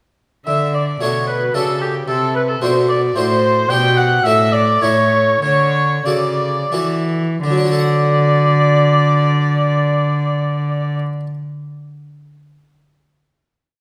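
A brief, radiant and serene baroque-style classical sonata movement in 3/4 with continuo, in which a smooth-topped oboe with light vibrato carries the melody while a distant, nasal gut-string violin doubles the tune in unison, a brilliant, full Italian-style harpsichord plucks bass and chords on the beats, and an up-front, reedy cello bows a walking, sustained bass, the music slowing from 2.9 s before settling onto a long final chord at 7.4 s in a reverberant recital hall.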